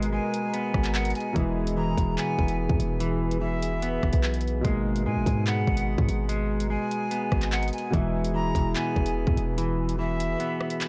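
Drill hip hop in a dark, ominous half-time feel at 146 BPM, this short cut pairs up-front drill drums with clipped kick and metallic hats, a punchy 808 bass that drops out at 10.4 seconds, a felt-muted upright piano with audible action noise, a clean fingered electric guitar playing arpeggios through spring reverb and tape echo, a breathy, crisp jazz flute second line with vibrato and tape echo, and a deep detuned ambient pad holding sustained chords in the background, all moving between G#madd9 and E.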